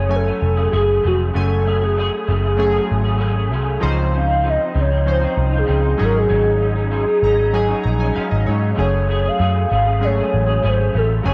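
A straight, unhurried 4/4 groove sets a dreamy, laid-back indie and bedroom pop mood in this fragment of a longer piece. A muted, picked vintage electric bass sits up front with a round, punchy, foam-muted tone. Over it, a guitar through a small old amp adds slightly broken-up, lo-fi, compressed accompaniment, coloured by ensemble chorus and a warbly pitch drift. Glossy, bright retro synth keys blend pulse and sawtooth waves with pulse-width modulation, a filter sweep, chorus and a cassette-tape colour, and they step forward with a fill from 6.9 to 8.8 seconds. A hollow, woody, clarinet-like synth lead carries the melody with soft, sustained notes, gentle vibrato, analog chorus and slapback echo, as the harmony moves from Gbmadd9 through Dbmaj9 and Ab7sus4 and back to Gbmadd9. A wet spring reverb and a dark, warm production wrap the whole track.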